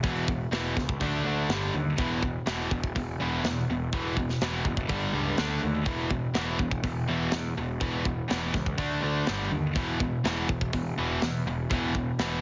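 A straight 4/4 pulse at 124 BPM drives this menacing hard rock excerpt in E minor, where a biting overdriven guitar and a bright, tight distorted guitar both play the riff, cycling through E5, D5 and G5 power chords over a growly, fuzz-laden picked bass. A tight metal drum kit with a medium-tuned snare, tight kick and rolled-off top sits up front in a studio room, and all four parts run together from the start through about 12.4 seconds. The mix has light reverb and a heavily compressed, radio-like sound, with the highs cut away.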